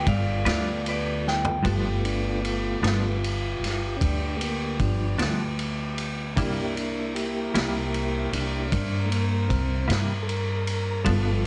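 A slow 12/8 blues at 51 BPM with a laid-back, swaggering feel, this passage opens on a brief, slightly broken-up, lo-fi lead from an electric guitar through a small old amp that closes with a drum fill from 1.2 s. At 1.6 s the mellow tonewheel organ, round and dark with key click and slow rotary speaker, takes the solo over G7 and C7, backed by a woody, growly pizzicato upright bass, a gritty vintage drum kit with punchy kick and dark cymbals, a clean hollow-body semi-hollow guitar with tremolo entering at 0.5 s, and a warm horn section sitting in the background.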